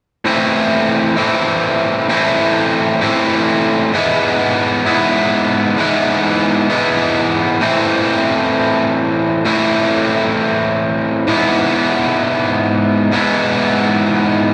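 A bright, overdriven electric guitar plays alone from 0.2 seconds, picked and double-tracked and sitting up front, in this melancholic, cathartic rock passage cut from a longer piece. It moves at 98 BPM in 3/4 in A harmonic minor, circling between Am and E/G# across two sections that turn at 7.6 seconds. A moderate recital hall reverb gives the sound the air of a church or concert hall until the guitar stops at 14.5 seconds.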